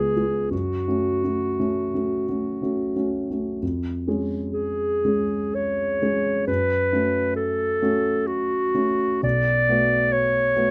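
Close, detailed microphones and a light reverb give this short cut from a longer classical piece an intimate, present sound. It is a romantic duo for clarinet and grand piano in triple metre, played with a flexible rubato that suits its elegiac, solemn mood. The clarinet carries the melody up front from start to finish, its warm tone smooth at the top and shaped in a classical style within a fairly narrow middle range. Beneath it, the grand piano supplies accompaniment with a dark, mellow, vintage character, reaching down into the deep bass. The passage moves from a brief opening phrase into a longer second idea at 3.6 seconds, and the two instruments sound together until the cut ends at 10.7 seconds.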